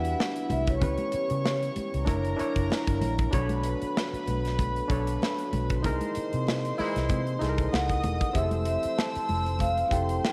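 Bittersweet and cinematic, this excerpt of lush 1970s-style soul rides a lightly swung groove from a punchy, polished drum kit, a dark, round, foam-muted fingered electric bass and bright, damped congas set in the background. A gritty, barky overdriven reed electric piano comps beneath soft-attack sul tasto strings and a tight, close-miked French horn section holding sustained chords. A ringing, vintage-toned vibraphone carries the melody at the start and returns at 7.7 s, just after a distant, roomy horn section with octave doubling punches in a brief stab at 6.8 s, all bathed in a moderate echo chamber reverb.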